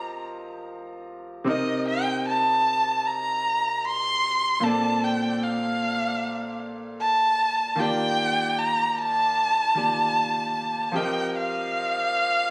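Moody and longing, this short R&B passage moves at an unhurried 76 BPM in 4/4, with a light swing on the sixteenths and tuning set to A4 = 441 Hz. A single bowed erhu carries the melody from start to finish, sitting up front with a rich, focused tone, a smooth top, expressive vibrato and sliding portamento, and a touch of delay trailing its phrases. Beneath it, a bright concert grand piano plays the accompaniment throughout, its brilliant, natural sound reaching down into a deep bass while staying close and present. The harmony drifts from F9sus4 through Cm7, Bbmaj7 and Ebmaj7 before returning to F9sus4 near 10.9 seconds. The recording has the feel of a phone capturing a small room, with light reverb and a faint mains hum, and it is cut from a longer piece.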